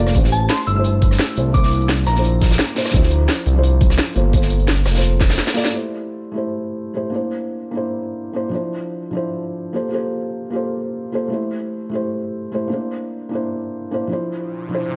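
Heard through a studio ambience with lossy compression artefacts, this rolling, melancholic liquid drum and bass excerpt opens on a drop where an overdriven, knocking electronic kick, a cracking, crisp, up-front drum and bass kit and a gritty, saturated breakbeat kit with a rolled-off top drive beneath a smooth, gliding sawtooth bass and a brief glassy FM bell melody washed in chorus and dub echo. The bass drops out at 5.4 seconds and a drum fill closes the beat at 5.7 seconds, leaving a soft, felt-muted upright piano, intimate and dark with audible action noise and tape echo, to carry the minor-seventh and extended chords alone. An electronic riser enters at 14.4 seconds as the cut ends at 15.0 seconds.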